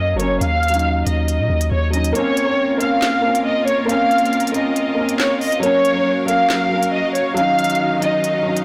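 A dark, low-pass-filtered studio violin section carries the melody over a mellow concert grand piano and a deep, sine-toned 808 bass that stops at 2.1 s, while an electronic drill kit of woody snare, crisp hats and handclaps sets a menacing, cold half-time feel at 138 BPM in Bb minor, and a biting symphonic string section enters with sustained chords at 2.1 s, all heard in a blown-out, overdriven mix with moderate recital-hall reverb.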